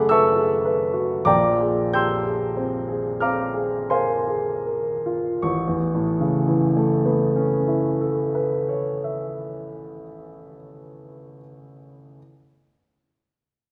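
A warm, natural baby grand piano plays alone in a dreamy, serene impressionist classical fragment, its lush chords of F#m11 and Bb9 unfolding in a rubato 3/4 that slows down through the first 5.4 seconds. The piano sits up front while a lingering recital hall reverb gives the sense of listening from further back in the room. A new passage opens at 5.4 seconds on an Aadd9, and the instrument spans its low bass to its high register before the fragment ends at 12.2 seconds.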